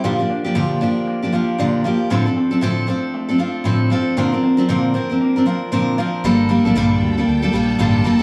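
A picked steel-string acoustic guitar carries the accompaniment in this tender, reflective acoustic pop excerpt at 116 BPM with a swung 16th-note feel. A twangy, plunky open-back banjo plays fingerpicked arpeggios in the background until 6.6 s. At 6.2 s a round, dark fretless electric bass enters, and a lush, bowed symphonic string section with vibrato joins on sustained chords. The harmony moves from Gm7/Bb through Dm7/A and Bbadd9 to Gmadd9, heard from further back in a small room with a short, wet reverb.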